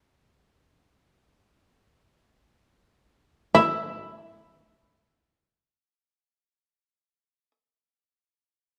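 In free time, this calm, austere fragment of Japanese chamber music eases into a slower pace over its opening 3.5 seconds before a second passage begins. The koto carries the melody around E5 with a mellow, woody, dry tone, its strings sounded with fingerpicks. Beneath it, the shamisen plays a second line near E4, plucked with a plectrum to give a percussive, buzzing, fretless voice that sits a touch louder than the koto. Both instruments stay up front from the start until 7.5 seconds, tuned to A4 = 441 Hz. A moderate recital hall reverb of about 1.5 seconds surrounds them, and the production is dark and warm, giving a sober impression of a passage cut from a longer piece.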